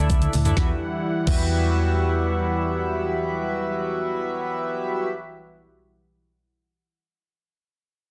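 In free time, a smooth R&B drum kit enters at 0.1 seconds with a fill, its kick, snare, toms, hi-hat, shaker and crash in play and its knocking kick and woody snare sitting up front before the kit stops at 1.4 seconds. This short, driving, energetic dance-pop excerpt in E minor, cut from a longer piece, moves from Dsus2 to Emadd9 at 0.6 seconds. A vintage muted fingered electric bass holds a dark, round, foam-muted low end between D2 and E2, sidechain pumping and running to 5.8 seconds. A glossy, retro chorused polysynth, blending pulse, sawtooth and square waves with a sub octave and a moving notch, plays accompaniment up front, while a smooth, warbling analog pad of detuned sawtooth and triangle tones sustains chords with a slow attack and long release under chorus, both pumping with the sidechain until 5.1 seconds. A moderate plate reverb and a dense, heavily limited modern master frame the sound, with a faint mains hum beneath.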